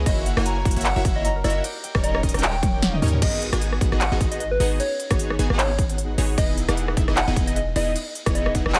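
Future bass at 152 BPM in G# minor with a swung, half-time feel, this dreamy, bittersweet drop opens with a ringing concert harp playing arpeggios in the background, its fingerpicked notes touched with delay and sidechain pumping until it stops at 5.3 seconds. From the first beat, a punchy, detuned supersaw stab riff and a deep, boomy 808-style bass pump alongside it, beneath a round, warbling FM lead whose keys-like melody carries chorus and delay. An up-front, overdriven dance kit with crisp hats, handclaps, snare and a punchy electronic kick drives the groove, with a drum fill at 2.6 seconds leading into the repeat as the chords move from F#7 and D#7 to G#m7 and Emaj7 under light reverb.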